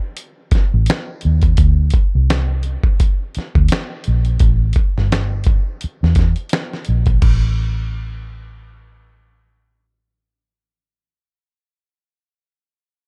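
This R&B and neo-soul fragment has a sultry, smooth mood, with a gentle swing in its sixteenth notes and a dark production. A dusty, sampler-style drum kit with a thumpy kick, a medium-tuned snare, hi-hat, finger snaps and crash cymbal enters at 0.2 seconds. It sounds compressed and gritty, as if re-recorded in a small room. A vintage, foam-muted electric bass joins at 0.5 seconds, fingered low in its register with a round, amped tone, and sits up front alongside the drums. The drums stop at 7.4 seconds, just after the music moves into a new section, and the bass then carries on by itself until the cut. The sound is close and dry, with little reverb.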